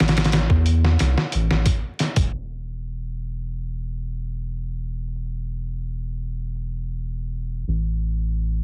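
A straight 4/4 pulse at 90 BPM opens this smoky, dark trip hop excerpt, carried by a sampler-style drum kit of hi-hat, thumpy kick and medium-tuned snare that plays only from 0.0 to 2.3 seconds. The kit sounds gritty and pitched down, tape-warm and re-recorded in a large room, yet it sits up front in the mix. A round analog bass runs the full length, from 0.0 to 8.6 seconds, holding deep, sustained notes between E1 and E2 with a fast attack and a nasal, sine-like tone. Once the drums stop at 2.3 seconds, the bass carries on alone under a filter sweep that lasts to the end. The whole recording has a heavily compressed, radio-like quality, dulled by a low-pass filter and dusted with vinyl crackle, with little reverb and tuning set slightly flat at A4 = 437 Hz.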